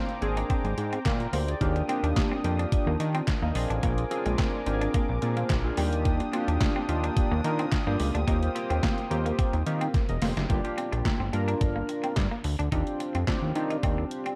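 Opening with a chorused polysynth, a warbling analog pad and a twangy, slightly broken-up electric guitar riff, then the overdriven, thumpy 8-bit drum machine with handclaps and gated reverb and a fat, wave-folded sawtooth bass, this smooth, danceable early-eighties boogie funk excerpt in Eb major at 108 BPM moves through glossy chords from Abmaj9#11 to Eb6, where the pad drops out after a drum fill at 9.9 seconds and the groove shifts to Gm7 and Ebmaj13.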